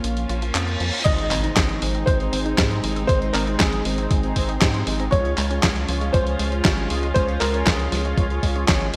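Italo disco excerpt at 118 BPM in Ab major, playful and romantic, with a bright 1980s-style digital sheen and a lush hall reverb. A gritty, compressed sampler-style kit with a fat, up-front snare, handclaps, hi-hat and crash drives the groove alongside a round, deep analog bass, while soft, floating strings hold sustained chords, a very quiet detuned pluck warbles through arpeggios and chorused, delayed synth brass adds stabs. An electronic reverse cymbal rises in the background into an impact at 1.1 s, where a thumpy electronic kick enters; a dark, mellow grand piano with chorus and delay, entering just before at 1.0 s, carries the melody as the chords move from Bbm through Ab to Db.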